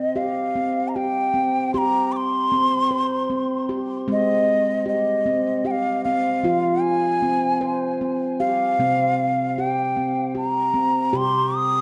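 A gently swung 3/4 lilt at 76 BPM carries this hypnotic, meditative world piece in C minor, where a breathy, bright bamboo bansuri with vibrato and a crisp attack sings the up-front melody through tape echo, while a ringing stainless-steel handpan, played with soft fingertips, spins mellow, airy arpeggios over chords moving from C5 to Ab and Fm, the pair set in a wet recital-hall reverb across this 11.8-second excerpt cut from a longer piece.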